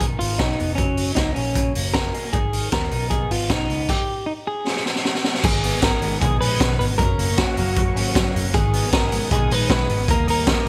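Jangly indie pop in G# minor at 155 BPM, restless and wistful, with a clean, fingered electric guitar melody carrying delay over a slightly broken-up, lo-fi guitar playing arpeggios, a dark, foam-muted picked bass, and a raw garage drum kit up front with a high-tuned snare and boomy kick. After a drum fill at 4.7 seconds, a full-bodied steel-string acoustic guitar with finger squeak joins at 5.4 seconds, and a swirling, detuned sawtooth pad with phaser and chorus comes in behind it at 5.7 seconds. The sound is bright 1980s-style digital production with light reverb and small room ambience, cut from a longer piece.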